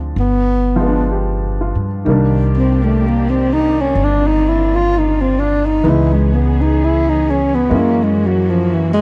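A slow jazz ballad at 64 BPM in 4/4 with a swung eighth-note feel, intimate and smoky, cut from a longer piece. A breathy tenor saxophone carries the melody from 0.2 seconds, dark and whispered with subtone, vibrato, a soft attack and scooped notes, close-miked and up front, and it moves into a solo at 2.1 seconds. Beneath it, a pizzicato upright bass sits up front with a growly, woody tone, while an upright piano accompanies with a smooth, vintage character and short sustain. At 2.1 seconds a distant chamber cello section enters, bowing sustained chords with expressive vibrato at a low level behind the other parts. The harmony moves from G7b9 into Cm9, then Dbm7 and F#9, giving the passage a shadowy, late-night color. The sound is dry and close, like a 1970s studio session with little reverb.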